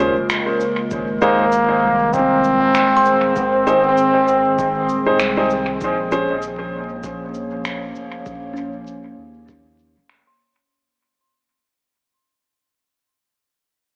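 Ambient dub in Bb minor at 98 BPM with a lightly swung 16th feel, spacious and hazy, bathed in a huge ambient reverb, vinyl crackle and an AM-radio tone. A warbling, nostalgic tape-like pad holds dark sustained chords over a round, deep sub bass, while a woody upright piano plays echoing stabs and an overdriven electronic kick sits in the background beneath produced finger snaps and shaker treated with dub echo and low-pass filtering. An up-front, close-miked trombone carries a classical-style solo melody from 1.2 s, a bright, ringing kalimba adds filtered arpeggios from 2.2 s, and this cut from a longer piece fades out from 5.8 s.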